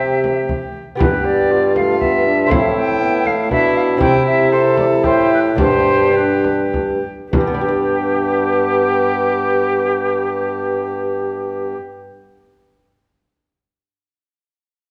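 In a straight 3/4 lilt between 98 and 120 BPM that slows from 3.3 to 7.3 seconds, this festive, courtly renaissance-style consort dance in G mixolydian moves through C, G and A minor. A pure, vibrato-touched silver concert flute carries the tune up front, over a nasal, gut-string viola second line, a clear trombone, a delicate fingerpicked lute with double strings in the background, and a dark bassoon bass. A deep frame drum played with soft hands keeps time until 7.6 seconds, and the lute rings on alone to 12.4 seconds, all set in a roomy recital hall reverb with a warm, dark production.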